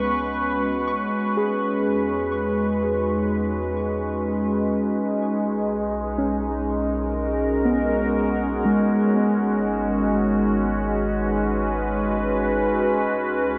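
Serene and reflective, this ambient passage, cut from a longer piece, sets an evolving, warbling vintage wavetable pad up front on sustained chords moving through Emaj7, Bmaj7 and G#m. Muted, intimate felt-like synth keys with ring modulation, a filter sweep and tape echo play arpeggios above a round, deep analog bass that fades in. A sawtooth drone with pulse-width modulation and phaser fades in from the background at 3.0 s, and the whole passage sits in a huge, wet ambient reverb.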